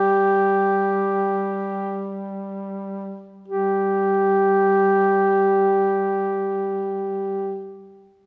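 In free time, the music opens by slowing down over its first 3.5 seconds, then moves into a new passage that runs to the close. This is a Caucasian folk lament, solemn and full of longing, tuned to A4 = 439 Hz and cut from a longer piece. A dark duduk carries the melody around G4, with a smooth top and a plain folk manner, sitting up front in the sound. Beneath it, a mellow duduk holds a drone on G3 at a lower level, its tone shaded with vibrato and scooped notes. Both duduks sound together from 0.0 to 7.6 seconds, wrapped in the lingering reverb of a church or concert hall with a 1.6-second decay.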